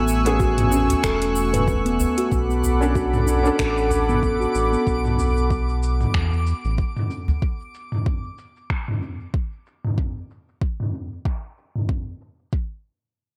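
A dreamy, reverb-soaked mix carries this mystical organic downtempo excerpt in B dorian at 94 BPM with a gentle swing, where a detuned sawtooth pad with chorus and a round, deep analog bass pump under sidechain, a ringing steel tongue drum plays filtered, delayed arpeggios, a felt-muted upright piano with audible action noise and a twinkling granular shimmer sit in the background, a deep udu adds acoustic weight, and an overdriven soft electronic kick and a deep house kit of finger snaps, metallic hats, shaker and toms continue alone after 7.4 s, with a filter sweep on the drums from 2.3 s as the chords move from Amaj7 to Bm7.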